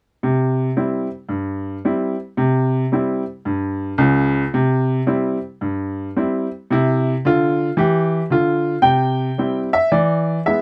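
Swinging and exuberant, this brief stride-piano jazz cut in C major moves at 111 BPM with a lilting swing feel, as a solo upright piano with a clear, woody, boxy tone sits up front in a moderate booth ambience from 0.2 to 10.6 seconds, ranging from deep bass to bright upper notes, moving from C to F over C before a new section at 8.8 seconds returns to C and lands on E7.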